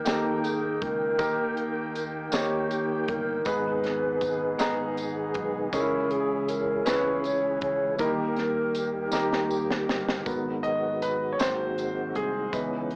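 In a slow 6/8 at 53 BPM, this fervent, solemn gospel fragment sets a mellow, hollow alto flute melody over intimate baby grand piano with audible action noise, tonewheel organ chords turning through a slow rotary speaker and chorus vibrato, fingered electric bass, a crisp fusion drum kit with a high-tuned snare and punchy kick, and jingly tambourine, heard as a small-speaker home cassette recording, until the flute stops at 10.0 s during a drum fill from 9.1 s that leads into a piano solo at 10.3 s.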